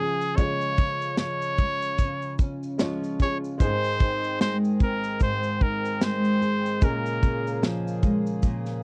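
A clear trumpet carries the melody up front in this short acoustic pop passage, its smooth-topped, vibrato-laden solo line sitting between Ab4 and Db5 before it drops out at 7.6 seconds. The tempo is a slow 74 BPM in 4/4 with a gentle 16th-note swing, and the mood is reflective and tender as the harmony moves from Db to Ab and on to Bbm7. A double-tracked nylon-string guitar, fingerpicked in a classical manner with old strings and a woody, full-bodied tone, sits up front beside a modern studio drum kit whose punchy kick, medium-tuned snare and shaker have a rolled-off top. Further back, a worn, boxy upright piano with a slightly detuned edge adds accompaniment, and at 3.6 seconds a reedy, breathing pedal harmonium enters with sustained chords. The sound is dry and close, like a 1970s studio recording, and the passage is cut from a longer piece.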